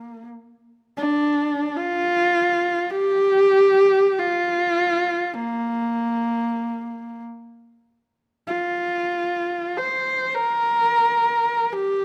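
Mongolian traditional folk in free time, this short excerpt from a longer piece features a single horsehead fiddle playing solo in a Bb gong mode, evoking a vast, galloping mood. The bowed horsehair strings sound husky and focused, with rich vibrato and portamento colouring a line that spans Bb3 to C5. Close, detailed microphones keep the fiddle up front within a moderate recital hall reverb of 1.5 seconds.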